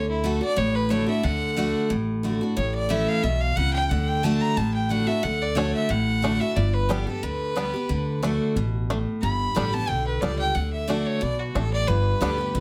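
Bluegrass in D major at a brisk 180 BPM, this short cut from a longer piece feels virtuosic and rustic, with a light swing on the eighth notes. A clear, intense fiddle carries the melody up front with light vibrato, while a bright, full-bodied picked steel-string acoustic guitar shares the foreground, its fresh strings giving off an audible finger squeak. Beneath them, a woody, thumpy pizzicato upright bass anchors the low end throughout. At 5.6 seconds a twangy, percussive banjo played with fingerpicks joins in on melody, staying until 12.3 seconds. The chords move between D, A and G, and light reverb gives the acoustic band a natural sense of space.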